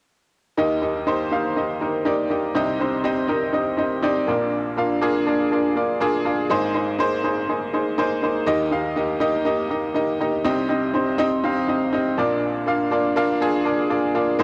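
A bright upright piano plays alone from 0.6 to 14.4 seconds, its brilliant, woody tone sitting up front with audible action noise and a slightly detuned, worn character. This short pop excerpt moves at 122 BPM in a straight 4/4, with a bittersweet, dramatic mood. The piano covers a broad span from Ab1 up to F5, and an analog delay trails its notes. The harmony cycles through Eb, Cm, Bb and Abadd9, then returns to Eb at 8.5 seconds as a second section begins and passes again through Cm and Bb. A short, wet booth ambience and the texture of a home cassette recording give the sound an intimate, close feel.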